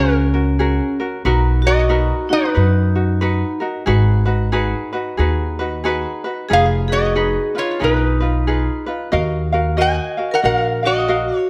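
Hawaiian and relaxed, this languid short excerpt moves at 91 BPM in a swung 4/4, with an up-front, nasal metal-body resonator slide guitar played with fingerpicks carrying the melody through slapback echo, a bright, ringing vibraphone struck with hard mallets and its motor off adding a second line, a light, fingerpicked ukulele giving accompaniment, and a woody, growly pizzicato upright bass on steel strings holding the low end, set in light reverb over chords that pass from F#add9 through Bmaj7, G#m7 and Fm7b5 to D#madd9.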